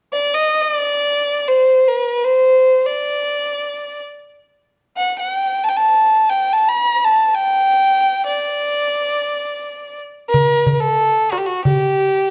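In free time, this stately, festive Turkish makam passage in D makam hicaz, tuned to A4 = 437 Hz and cut from a longer piece, is carried by a single bowed violin, clear, smooth and even, with vibrato, close and up front as it sings the melody from F#4 to B5-42c. At 10.3 s a small metal-shelled darbuka joins, its crisp, high strokes from hard hands heard close, before both stop at about 12.3 s. A moderate recital hall reverb surrounds the pair, and the sound is rounded off with nothing above 7.6 kHz.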